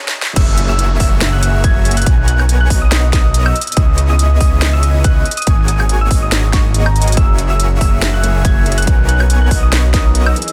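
A dark, mellow piano and a trap-kit fill open this lush, bittersweet future bass excerpt before the drop lands at 0.4 seconds. A half-time 141 BPM groove with a gentle swing follows: a punchy layered kick and a thick detuned saw bass sit up front, a huge compressed supersaw riff pumps beneath, and a round, tine-like pluck carries the melody over an airy, dreamy lead playing arpeggios. Crisp hats and a sharp snare drive the drums, a very quiet downlifter runs until 3.8 seconds, and the piano drifts back in the background at 7.2 seconds over chords moving from F#9 through Bmaj9, C#m9 and G#9sus4, all in a dense, heavily limited mix with little reverb.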